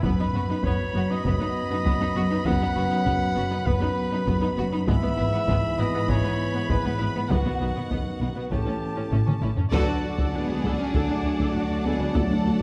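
Heavy-stick taiko drums, a lush bowed violin section carrying the melody over a second violin line, smooth violas, focused cellos and distant double basses open this triumphant, heroic orchestral film-score excerpt in B mixolydian at 99 BPM, with dark French horns and punchy trombones holding sustained chords, a bright, roomy solo trumpet adding stabs until 9.4 s, and a drum fill at 9.1 s leading to an ensemble accent at 9.7 s as the music moves to a D chord in a concert-hall reverb.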